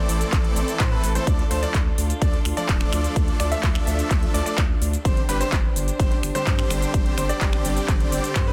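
A dense, heavily limited modern mix with little reverb carries this emotional, powerful festival progressive house excerpt at 127 BPM in 4/4 over Am, Dm and Gsus4, where a punchy, up-front electronic kick and a big-room drum kit of finger snaps, handclaps, metallic hi-hats and shaker drive a huge, euphoric detuned supersaw riff with tape echo, a bright grand piano playing arpeggios with 12-bit sampler grit, audible action noise and tape echo, a deep saturated sine sub bass, and soft, intimate sul tasto chamber strings holding sustained chords in the background, with the strings, piano, lead and bass pumping against the sidechain.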